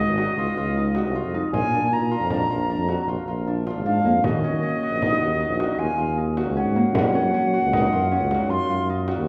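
A pure, crisp-attacked silver concert flute carries the melody up front in this hypnotic, restless piece of contemporary chamber music, moving in an uneven 7/4 at 155 BPM in Eb minor, tuned to A4 = 443 Hz, before falling silent at 8.9 seconds. Beneath it, a Celtic harp rings out thumb-plucked arpeggios while a classical-style tuba holds the bass close and prominent, and a small, bright frame drum joins at 0.2 seconds from further back. The wet recital hall reverb of a church or concert hall surrounds this short excerpt, which passes through Dbsus2, Bb7, Ebm7 and Gb5 chords.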